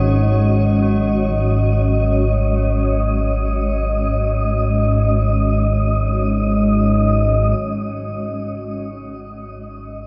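An up-front analog drone, evolving sawtooth and pulse tones with chorus, opens this unsettling, cavernous dark ambient piece in free time, sitting low around G#1 to G#2 beneath a cloudy, blurred granular pad holding sustained G#5 chords between G#3 and C#5 and an airy, wind-like tuned noise texture on D#5. The pad and the texture are bathed in shimmer reverb, and everything sits within a wet cathedral space. Soft, metallic tubular bells ring arpeggios on F#4 in the background through delay and shimmer. At 7.6 seconds the pad and bells stop, and the warm drone and breathy wind texture carry on until 10.1 seconds in this excerpt from a longer piece.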